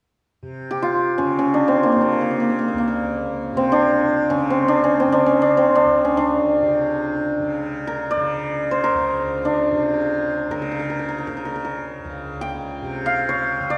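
In free time, this meditative, serene excerpt of Indian classical music opens at 0.4 seconds with a softly plucked, buzzing tanpura drone in the low register. At 0.7 seconds a hammered santur enters up front, carrying the melody with a ringing, shimmering tone. Both sit in the long, wet reverb of a concert hall.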